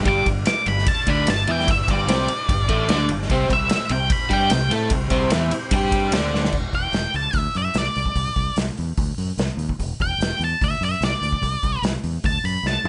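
Gritty and smoky, this clip of blues rock and southern rock drives along at 148 BPM in a straight 4/4, with an up-front octave-fuzz lead guitar soloing in a dark, distorted voice with slapback echo over a bright, double-tracked, compressed rhythm guitar riff and a very quiet, thick tonewheel organ with key click, chorus vibrato and a slow rotary speaker. The organ and rhythm guitar drop out at 6.5 s as the harmony moves from G5 and C5 power chords to a cycling Em, D, C, D progression. A growling, overdriven fingered bass and a punchy vintage kit with dark cymbals and a pumping small-room sound carry through to the end, with drum fills at 6.3 and 12.7 s, all in a dry mix.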